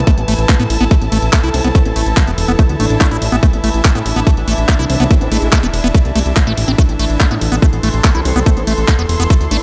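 A tight, up-front electronic kick drives a straight 4/4 pulse at 143 BPM, joined by a crisp, tape-warm garage kit of handclaps, hi-hat and ride cymbal that sounds re-recorded in a large room. This intense, psychedelic trance excerpt in A minor is anchored by a fat analog bass, thick and up front, blending sawtooth, square and triangle tones with ring modulation and a filter sweep. Above it, a squelchy, resonant acid bass riff between A3 and E4 runs through a phaser and tape echo, pumping against the kick. A sustained drone of moving overtones with a slow attack, chorus and reverb holds chords underneath, while a distant, lush string section with vibrato adds a bowed ensemble texture up to C6. A wobbling formant-filtered bass line sits in the background from 1.5 to 5.6 seconds and returns at 8.3 seconds, all set in a digital ambience.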